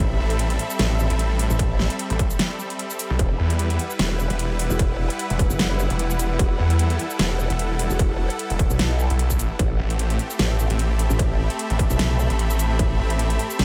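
An aggressive, heavy slab of wobble dubstep, cut from a longer piece, sits in a digital ambience that puts its twin basses up front and pushes everything toward a dense, saturated wall. A growling, formant-filtered growl bass with chorus and overdrive wobbles low from the first second, joined at 0.2 s by a snarling distorted saw bass whose detuned sawtooth tone carries a moving notch and plenty of grit. Beneath the half-time, lightly swung groove, a dubstep drum kit brings a huge snare, metallic hats and shaker bathed in studio reverb, while a distorted, layered electronic kick drum punches in at 1.6 s. Higher up, a lush, bright supersaw pad holds sustained chords and a bowed studio string section adds expressive vibrato and portamento, both pumping under sidechain. The harmony moves from Am7 to Em and back to Am7, keeping the menace grounded while the strings lend a smooth, cinematic sheen.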